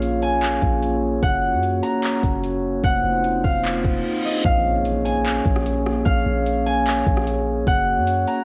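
Dry and dulled by home cassette tape, this hazy, spacious cloud-rap piece in Bb minor moves at 149 BPM in a half-time feel, setting an up-front, ringing, fingerpicked concert harp melody, low-pass filtered and tape-echoed, over glassy, ethereal glass harmonica chords that pump with the sidechain, a deep, boomy 808-style bass, and a soft-kicked electronic R&B kit with metallic hats, handclaps and rim clicks, while a reverse cymbal enters at 3.8 seconds, the drums drop out briefly from 4.0 to 4.4 seconds, and an electronic impact lands at 4.4 seconds.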